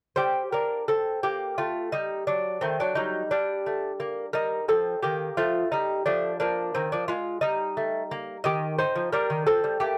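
A fingerpicked solo lute opens at 0.2 seconds with a baroque-style classical dance in 6/8, played with a free, rubato feel that gives the music an introspective, grave mood. The delicate tone of the gut double strings, some of them octave-doubled, sits up front in a light reverb as the harmony moves through darkened minor colours before settling onto brighter major chords. The passage is cut from a longer piece and breaks off at 10.0 seconds.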